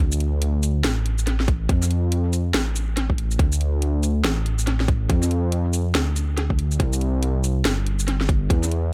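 A dark, detuned sawtooth bass opens this brooding deep dubstep excerpt, its rumbling, beating low end sitting up front with a fast attack and long sustain. A layered, electronic garage kit of hi-hat, shaker and cracking snare follows, overdriven and steeped in tape echo over a swung, half-time feel, before a tight, overdriven electronic kick drops in at 1.5 seconds. The whole mix sits in a cavernous, echo-heavy digital ambience.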